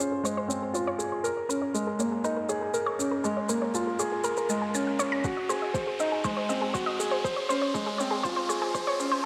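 Bathed in a wet concert-hall reverb and thinned by a high-pass filter, this short excerpt of piano-and-strings electronica moves at 120 BPM in a straight 4/4, with a moving, melancholic air. A worn baby grand piano sits up front playing a riff, its delay trailing behind it, while a round, nasal analog pluck spins bright arpeggios through chorus, delay and sidechain pumping. An overdriven shaker ticks throughout, and an electronic riser enters at 1.1 seconds as the passage builds under a filter sweep. A soft, overdriven electronic kick drum joins at 5.2 seconds to thicken the build-up. The harmony drifts from Dbmaj7 through Eb7sus4, Bbm7 and Ab7 before settling back on Dbmaj7.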